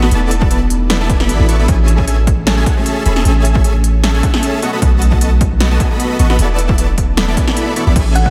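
Lush and euphoric, this future bass excerpt rides a half-time feel at 153 BPM in A major, with a huge, thick, detuned supersaw riff pumping against the sidechain and trailing delay over a very quiet, ethereal pad and a deep, mellow 808-style bass sitting up front, through a progression of E7sus4, Amaj7 and B7. Punchy, overdriven drums fill out the groove: a big-room kit with crisp hats, snare and crash, joined at 0.4 seconds by a layered electronic kick, all set in a large room. A round, tine-like thumb-piano pluck with chorus surfaces only at 8.2 seconds, just as this cut from a longer piece ends, under a light reverb.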